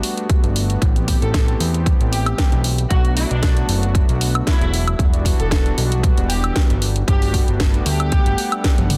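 A smooth, detuned sawtooth pad with chorus, sidechain pumping and slapback echo opens this groovy, cosmic nu-disco excerpt at 115 BPM in A dorian, alongside an overdriven house kit of cracking snare, hi-hat, toms and woodblock, joined by a punchy, up-front electronic kick and a fat, saturated sawtooth-and-square bass that pumps beneath the chords. At 1.2 seconds a dark, woody studio violin section enters in a distant, bowed ensemble with vibrato, its 12-bit sampler grit and tape echo adding a vintage haze as the harmony moves from Gmaj9 through Am7, Bm7 and Em7. The 16th-note swing keeps the groove loose, light digital reverb gives the dense, heavily limited mix some air, and a drum fill lands at 8.8 seconds before the cut.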